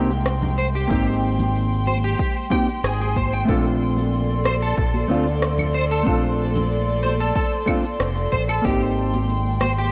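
A growling fingered electric bass sits up front in this sunny sunset chillout excerpt, its bright, overdriven tone anchoring the low end between F1 and D2. At a relaxed 93 BPM in straight 4/4 and Bb major, a dark hollow-body jazz guitar plays accompaniment through a low-pass filter and delay, while an airy, breathy pad holds soft, slow-blooming chords with chorus and vintage 12-bit sampler grit. A clean, picked electric guitar enters at 0.6 seconds with arpeggios, thickened by ensemble chorus and delay. The drums pair a punchy, layered electronic kick, arriving at 0.9 seconds, with electronic cabasa, rim click and claves, while very quiet, ringing congas played with hard hands sit close in the mix. The harmony moves from Abmaj7 to Bbmaj9 at 3.5 seconds and back again, and the recording is washed in a lush hall reverb and the warbling pitch drift of worn cassette tape.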